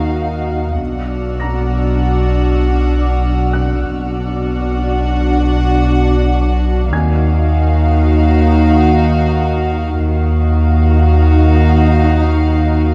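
A dark, warm production sits in a wet recital-hall reverb, giving this cut from a longer suspense film score a mysterious, tense air in free time and Eb harmonic minor. Bowed sul tasto string sections hold the whole span: a close, floating violin melody between F5 and F#5, a rich, distant second violin line on Gb4, and a woody, lush viola accompaniment with vibrato. Beneath them, soft-attack cellos and a double bass section sit in the background, joined by a deep, saturated sub bass drone that is the heaviest layer in the mix. A warbling, lo-fi pad with chorus and built-in reverb adds nostalgic sustained chords, while a felt-muted upright piano lends intimate, mellow texture with audible action noise. A high, pure violin texture hovers from 0.8 to 6.6 s as the harmony moves from Ebmadd9 to Bm and returns to Ebmadd9 at 6.9 s.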